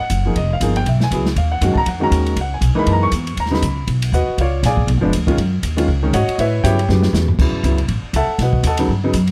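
A woody, thumpy upright bass sits up front in this short slice of small-group swing and bop, its gut strings plucked in a low register that drives the trio at a brisk 239 BPM in 4/4 with a playful, swinging feel. Beside it, an intimate concert grand piano comps through the changes with deep bass, short sustain and audible action noise, moving from Fm9 and D#m9 through F#13 and C#7b9 toward A13, Dmaj9 and B7b13 in F# major. The open jazz drum kit sits further back, pairing dark cymbals and a medium-tuned snare with a boomy kick in an airy, polished small-room sound. A drum fill at 6.9 seconds sets up the return of the opening section at 7.4 seconds. Close, detailed microphones and very little reverb keep the whole trio natural and immediate, and the clip breaks off at 9.3 seconds as part of a longer piece.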